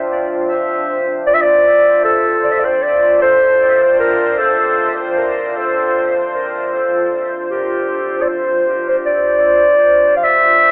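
Ambient music in D minor at 77 BPM, with a deep, hazy mood and a light swing on the sixteenths. A moody, detuned pad holds a single Dm11 chord from the start, its slow attack, long release, chorus and built-in reverb giving it a soft, mellow glow. At 1.3 seconds a dark clarinet enters with a classical-style solo melody and carries on until the end at 10.7 seconds. Dub echo trails its notes, and though it sits up front, its tone feels distant and roomy. The whole mix is echo-heavy, with a moderate plate reverb and a telephone-like sound, and this short passage is cut from a longer piece.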